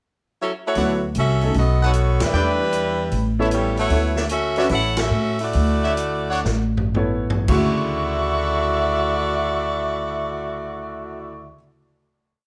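Swung eighths in 4/4 drive this brassy big band swing piece in D major, with a tempo that ranges from 107 to 153 BPM and slows from 3.9 s before a drum fill leads into a long final chord at 7.5 s. An up-front saxophone section carries a motif-based melody in four-part block voicing with light vibrato, while a clear, tight trumpet section adds syncopated drop-2 stabs, a bright, brilliant upright piano comps in quartal voicings, and a woody pizzicato upright bass plays a two-feel line. A distant, roomy drum kit with a boomy kick keeps time on the hi-hat and stops at 7.7 s, and the whole band hits accents at 2.1 and 4.9 s in a moderate large-studio reverb.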